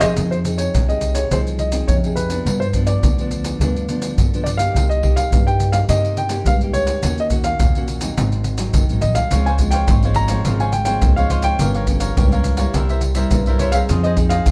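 A compressed, saturated percussion section of maracas, pandeiro, tamborim and deep surdo sits up front with hard hands, alongside a woody, growly pizzicato upright bass, a fingerpicked classical nylon-string guitar and a baby grand piano carrying the short-sustained melody in this bittersweet, yearning samba and choro excerpt in F minor at 105 BPM. The harmony moves from Fm7 through G7, Cm7 and Ebm7 to Dbmaj7, where a crisp, picked cavaquinho returns at 9.3 seconds after a brief flick at the very start. The chords then turn through Gm7b5 and C7 back to Fm7, all in a dark, warm production with light reverb.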